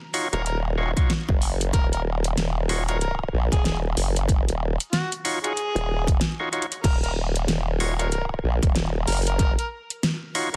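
A swung 16th-note groove in 4/4 drives this swaggering, playful glitch hop excerpt, where a punchy electronic kick entering at 1.0 s and a pop drum kit with a fat snare, metallic hats, rim clicks and crash cymbal sit up front beside a chorused, overdriven formant-sweep wobble bass of sawtooth and sine. Short stabs from a thick, gritty tonewheel organ with key click pump against the sidechain through dub echo, while an amplified, overdriven harmonica plays a jazz-style solo melody with tongue slaps and light vibrato, all in a dense, heavily limited, dry mix broken by a drum fill at 6.5 s.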